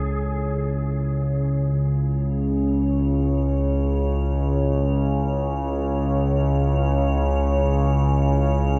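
Dark ambient drone, cavernous and ominous, in which a distant, airy bamboo shakuhachi note with vibrato and diffuse delay sounds only until 0.7 s over an up-front, nasal analog drone with pulse-width modulation and chorus and a very quiet, detuned, moody analog pad holding sustained chords, before an icy, crystalline glass pad with chorus and its own reverb joins at 2.7 s, the whole fragment of a longer piece set inside a huge ambient reverb.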